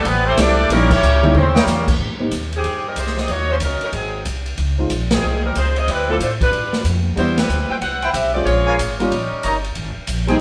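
A live-in-one-room big band sound with moderate studio reverb opens this joyful, energetic swing fragment in Ab major, cut from a longer piece and moving at 186 BPM in 4/4 with a 64% swing on the eighths. A clear, tightly blended saxophone section carries the melody with vibrato throughout, while a muted trombone section adds a nasal, straight-muted second line that stops at 1.9 seconds. Underneath, a woody, thumpy upright bass with gut strings plays pizzicato up front, and an airy, polished drum kit with dark cymbals, a medium-tuned snare and punchy kick drives the swing, adding a fill between 1.0 and 1.7 seconds. A concert grand piano with audible action noise and deep bass comps intimately, dropping out after 2.3 seconds and returning at 4.8 seconds. The trumpet section punches in with a single stab at 1.6 seconds and returns from 8.0 seconds to the end, as band accents and a harmony moving through Abmaj7, Dbmaj9 and Cmaj7 keep the energy bright.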